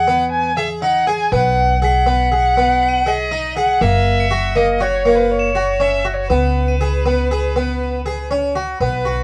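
A bowed solo violin, a plucked French-style harpsichord and a pizzicato upright bass begin together in this hopeful piece of contemporary chamber music, cut from a longer work and set in an uneven 5/4 metre with a straight feel. The single violin carries the melody with a rich, smooth and even tone and vibrato, sitting up front with a slightly distant quality. Beneath it, the harpsichord's two sets of strings give its arpeggios a full body, while the upright bass, strung with steel, supplies a woody foundation. At 1.8 seconds, crotales struck with brass mallets enter in the background, adding a bright, bell-like shimmer until 8.6 seconds. The harmony moves from Emaj7 through B6 and F#7, and the ensemble is tuned to A4 = 444 Hz. Light reverb and the sound of a worn cassette tape, with its warbly pitch drift, give the whole recording an aged, shimmering glow.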